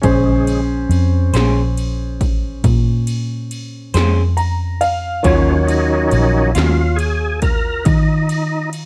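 Smoky and mournful, this slow 12/8 blues in Bb minor at 46 BPM is an excerpt led by a thick, lightly overdriven tonewheel organ soloing through a slow rotary speaker with chorus vibrato, over a round, foam-muted electric bass up front, 80s electronic pad drums with a punchy kick, gated snare and ride cymbal, an intimate, boxy grand piano with audible action noise that adds a fill at 4.0 seconds, and a slightly broken-up, lo-fi electric guitar with tremolo playing from 1.3 to 6.8 seconds, all in light reverb as the harmony moves from Bbm9 to Ebm9.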